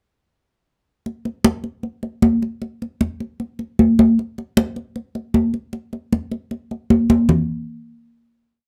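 Close, detailed microphones and a light reverb frame this short, driving jazz piece in straight 4/4 with a sultry mood. Ringing, high-tuned acoustic congas sit dry and up front from 1.1 to 7.4 seconds, struck with hard hands in slaps and open strokes across a high and a low drum. A final hit arrives at 7.3 seconds to close the piece.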